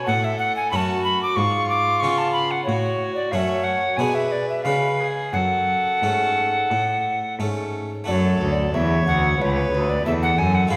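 An up-front alto recorder carries the melody from 0.1 seconds with a crisp, chiffy attack and an airy, straight tone in this dance-like, flowing baroque-style sonata movement with continuo, cut from a longer piece and set in 4/4 with uneven beats. Beneath it, a distant gut-string violin with light vibrato plays a second line, a round, plucked harpsichord supplies the accompaniment, and a rich, reedy cello sits up front on the bass, with violin and cello both in period style. The ensemble sounds in a wet recital-hall reverb, like a church or concert hall, with a new section arriving at 8.1 seconds.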